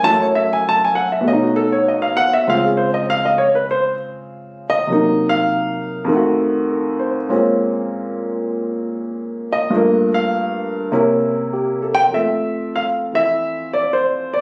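A relaxed, swinging 4/4 at 99 BPM carries this solo jazz excerpt, where an intimate baby grand piano, up front with short sustain and audible action noise, plays alone through rich chords such as Dbmaj7, F7b9 and Bbm9 before settling on Fmaj7 at 12.1 seconds, all caught by a phone in a room with moderate studio reverb.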